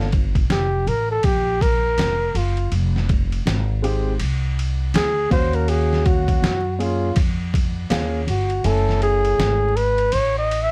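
A breathy flugelhorn with vibrato and scooped notes solos up front over a dark baby grand piano, a woody pizzicato upright bass and a gritty, pitched-down sampler-style drum kit in this nocturnal, mellow jazz-hop excerpt at 81 BPM with a swung 16th feel, light reverb and vinyl crackle, the kick dropping out at 8.6 seconds as the chords move from Gm9 through Fm and Ebm9 to F#m9.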